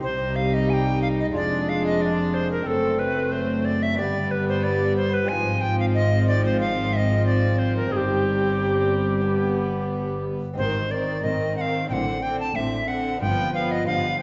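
A straight 4/4 pulse at 91 BPM drives this stormy, dramatic baroque-style concerto movement in C minor, where a bright, airy alto recorder with vibrato and a soft attack sits up front, joined on the melody by a dark, very quiet violin section, while a rich violin section with light vibrato carries a second line, a delicate, fingerpicked lute and a warm viola section fill in the accompaniment, and a reedy, period-style double bass section and a distant cello section in the background anchor the bass, all heard from further back in a wet recital hall with a 1.5 s reverb tail in this passage cut from a longer piece.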